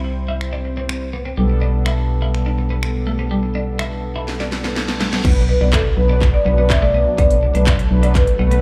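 Heard live through a club PA with a touch of room reverb, this upbeat, summery dance-pop excerpt moves at 124 BPM in a straight 4/4, moving from C to Gadd9/B and then to Bm. Dark, round synth brass with chorus and sidechain pumping, a bright, twangy twelve-string electric guitar riff with lush chorus and slapback echo, and a hollow, percussive FM bass that sits up front all play from the start, with a punchy, layered house kit of kick, cracking snare, crisp hats, handclaps, finger snaps and crash joining at 0.4 seconds. A drum fill and a very quiet reverse cymbal lead to 5.2 seconds, where a mellow, evolving supersaw swell with sidechain pumping takes up sustained chords in the background and a woody marimba melody with digital delay and slapback echo comes in just after.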